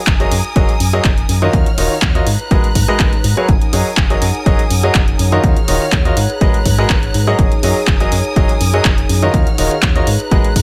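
A punchy, tape-tinged electronic kick drives a straight 4/4 at 123 BPM alongside a layered house kit of handclaps and hi-hat, in this euphoric, joyful piano house excerpt in F# major. A bright, brilliant baby grand piano riff with long sustain and delay rides over a hollow, organ-like FM bass with a fast, decaying attack, and the piano, bass and a lush, vibrato-rich violin section of sustained chords pump against the kick. Deep in the background, a warbling, nostalgic lo-fi pad with chorus and its own reverb drifts through a looping F#6/9, D#m9, G#m9 progression, and the whole mix sits in a digital ambience.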